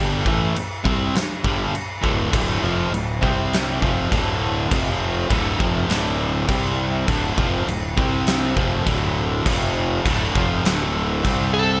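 Bright, 1980s-style digital production with light reverb and studio ambience frames this swaggering, powerful hard rock excerpt at 101 BPM in a straight 4/4. Up front, a distorted electric guitar plays the riff with a bright, overdriven edge, joined in the background by an overdriven semi-hollow guitar given a hollow-body tone and ensemble chorus. Underneath, a fuzz fingered electric bass growls with a direct and amped grit, while a huge arena drum kit enters at 0.3 seconds with a punchy kick, medium-tuned snare and crash cymbal, all bathed in gated reverb. The riff cycles mostly around D5 power chords, dipping to C5 and reaching up to F5. At 11.5 seconds a dark, smooth lead guitar steps forward on a single overdriven A4 just as the clip ends.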